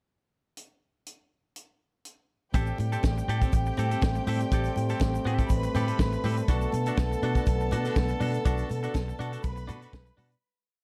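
A dark, warm studio sound with reverb frames this short, danceable disco piece in A dorian, moving at 122 BPM with a sultry, straight 4/4 feel. A tight funk drum kit opens alone at 0.6 seconds with a pickup bar, its high-tuned snare and tight kick up front in a four-on-the-floor beat with sixteenth-note hats. At 2.5 seconds the full groove arrives over Am7, shifting to Bm7 at 6.5 seconds. A vintage muted fingered electric bass sits up front, round and punchy, playing an octave disco line with slides. A clean, twangy electric guitar chops sixteenth-note disco accompaniment, while a clear, biting chamber violin section carries long high lines and a distant, roomy French horn section holds a sustained pad beneath. Very quiet congas with thick skins play a groove with a slap on two and open tones on four, a grainy tube shaker ticks sixteenths in the background, and the piece fades out from 8.5 seconds.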